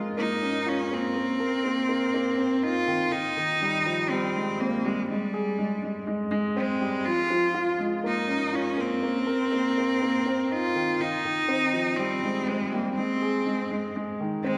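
A wet scoring-stage reverb, with a 1.7-second tail, gives this electronica excerpt a spacious, cinematic sound. At 122 BPM in a straight 4/4 and in F minor, the mood is hypnotic. A dark, mellow grand piano sits up front from the first moment, playing a repeating riff between Eb3 and Bb4. At 0.2 seconds a single bowed cello enters, also close and present, carrying the melody between G3 and F4 with a focused, clear tone and vibrato. Beneath them the harmony cycles through Bbm7, Cm7, Fm9 and Abmaj7, then repeats and settles on Ab as the piece is cut off at 14.6 seconds.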